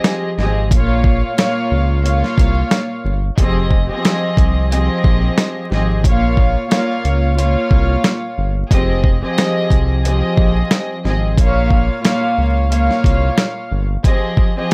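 A string section and a dusty, sampler-style drum kit open this gritty, moody boom-bap hip-hop excerpt together at 0.0 seconds, moving at 90 BPM in 4/4 with a light 16th-note swing in F minor. The compressed drums sit up front, with a thumpy kick, a medium-tuned snare and hi-hat carrying a soul-record grit. At 0.4 seconds a round analog bass enters in a deep low register, its fast attack and sustained, mellow tone blending sawtooth, sine and triangle into an evolving sound. The bowed string ensemble floats in the accompaniment with a soft attack and a pure, distant quality, softened by cassette-tape colouring and filtering at both ends of its range. The harmony alternates between Fm7 and Bbm throughout, and a layer of vinyl crackle and light reverb gives the whole piece a gritty, moody atmosphere before the bass drops out at 14.0 seconds.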